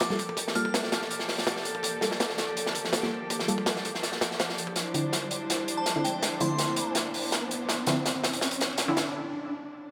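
Drenched in a wet echo-chamber reverb with small-room ambience, this nostalgic, raw drum and bass and jungle build-up at 164 BPM in G minor sets a gritty, saturated breakbeat kit up front beneath muted, detuned dub chord stabs under a filter sweep with chorus and dub echo, distant bowed strings holding sustained chords roughened by vintage 12-bit sampler grit, a very quiet drifting glass-harmonics texture, and brief crystalline FM bell phrases with phaser at 0.0 and 5.8 seconds, while an electronic riser climbs in from 1.1 seconds and a drum fill arrives at 4.8 seconds as the harmony moves from Gm9 to Dm9 before a short break.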